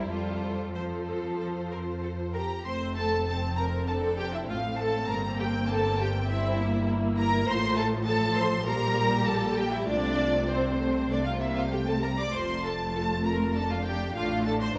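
A quick classical-period movement for string orchestra, this lively, spirited passage is cut from a longer piece and moves with a rubato feel in 4/4. The first violins carry the melody from the opening to 14.7 seconds, their clear, intense tone sitting up front in the mix. Beneath them, the second violins play a focused second line while the violas supply accompaniment with a rich, somewhat distant sound. Cellos and double basses share the bass, their bowed lines smooth and even, with the basses set further back. A wet concert hall reverb surrounds the lush ensemble, and the harmony travels from F through a diminished chord and several inversions before settling on a C5 at 11.1 seconds and returning to F.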